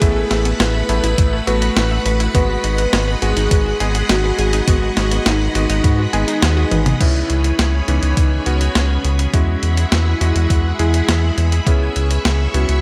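A round, deep analog bass sits up front in this cinematic, driving synthwave cut from a longer piece, moving at 103 BPM in a straight 4/4 in C# minor, its mellow tone pumping against a thumpy electronic kick. A soft octave-layered synth lead carries the melody with a dark, triangle-and-sawtooth voice dressed in chorus, tremolo and delay, while a vintage string machine holds lush sustained chords with ensemble chorus and its own sidechain pumping. A clangy electric grand piano punches out stabs through delay, and early on a dreamy, very quiet FM electric piano with a soft pad layer adds a second line as a detuned unison pluck spins delayed arpeggios in the background. A clean 12-bit digital drum machine supplies a medium-tuned snare, hi-hat, crash cymbal and toms; the kick drops out just before a drum fill that leads into the second section at 7.0 seconds, where the pluck and FM piano have already fallen away. 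The harmony moves from Asus2 and G#m7 to C#m7 and Eadd9, and the kick stops for good at 11.8 seconds. Light reverb and bright 1980s-style digital production frame the whole cut.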